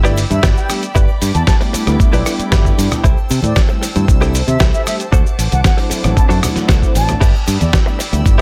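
Sunny and feel-good, this short excerpt from a longer nu-disco track moves at 115 BPM in G major, with chords moving from G6 to C6, D7 and back to G6. An up-front, gritty, thumpy electronic kick enters at 0.4 seconds beneath a dusty, compressed sampler-style kit of hi-hat, rim click, shaker, crash and a medium-tuned snare, while bright, dry congas and tube shaker sit in the background. A bright, direct fingered bass carries the low end, and a clean, scooped electric guitar, recorded direct with subtle chorus and delay, plays a picked riff with a fill from 2.0 to 3.0 seconds. Round, dark synth brass with detuned sawtooth tone, vibrato, tape character and sidechain pumping fills out the accompaniment, above which an intimate chamber string section holds soft, bowed sul tasto chords that also pump. A mellow, airy flute with straight tone and delay carries the melody from a distance, all within a digital ambience.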